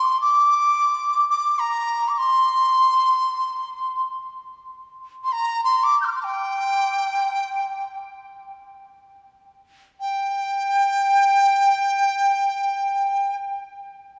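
Bathed in a cathedral-like reverb with a long 4.5-second tail, this wistful, tender fragment of Chinese traditional music in free time features a solo dizi whose pure, mellow bamboo tone, buzzing membrane and unsteady vibrato sit up front as it carries the melody in a G yu mode, slowing from 3.6 to 10.0 seconds before moving into a new section until it breaks off at 13.3 seconds.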